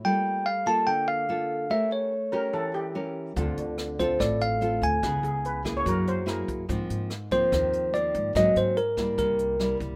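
A straight, easy bossa nova groove in four carries this breezy, romantic fragment, cut from a longer piece. A fingerpicked nylon-string guitar, classical in tone and up front, lays down the accompaniment from the start, while a bell-like tine electric piano sings the melody in a bright, clean, direct voice above it. At 2.3 s a steel pan played on cello pans with medium rubber sticks adds a shimmering, airy second line. At 3.4 s a woody, growly pizzicato upright bass on steel strings joins with a small-room brush kit of hi-hat, rim click and a boomy kick. The harmony drifts through lush jazz chords, moving from Gm9 and A7b9 through Dm7 and Ab69 before landing on C7, all set in a light reverb.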